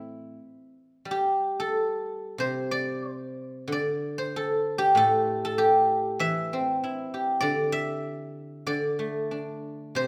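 In a free, rubato pulse, this short extract of Chinese traditional solo music features a guzheng played with fingerpicks, its silvery, ringing tone sitting up front across a range from A2 to E5, with an elegant, longing mood carried by the moderate reverb of a recital hall.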